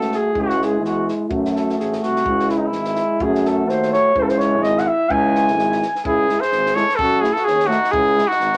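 A mellow flugelhorn with light vibrato opens this restless, bittersweet Balkan brass band excerpt at 127 BPM in a swung 2/4, taking a solo in C# harmonic minor over alternating C#m and F#m chords. Beneath it sit a clear, close-miked trombone, a soft-attack euphonium, a distant tuba on the bass line, and a dry cocktail drum kit with a punchy kick and high-tuned snare. At 6.1 seconds a warm, smooth-topped trumpet enters up front with the melody, and the flugelhorn moves to a second line inside a small, moderately reverberant room.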